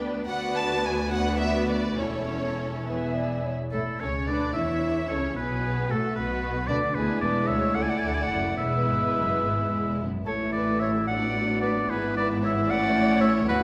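A bright, up-front solo oboe carries a second line from 3.7 s in this excerpt from a quick, spirited and cheerful classical-period movement for symphony orchestra, in A major and 6/8 at 66-77 BPM in dotted quarters with a rubato feel. Mellow French horns hold sustained chords beneath it, while a dark clarinet offers a smooth-topped phrase just before, from 2.9 s. The strings play throughout: an intimate, sul tasto violin melody from 0.3 s with light vibrato, a shadowy violin second line, a lush viola accompaniment in the background, and distant, expressive cellos and double basses on the bass, all bowed in a reverberant concert hall.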